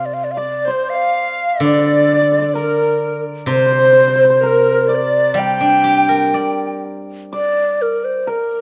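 Tender and wistful, this brief fragment of a longer Chinese traditional chamber piece moves in a rubato 2/4 around 64 BPM, with a hollow, airy low xiao singing the melody up front with vibrato and tongued notes while a shimmering hammered dulcimer and a bright large dizi, its buzzing membrane and crisp, chiffy attack heard from 0.3 to 6.8 seconds, trace a second line above a silvery, fingerpicked steel-string zither's ringing accompaniment, all captured by close, detailed microphones in light reverb.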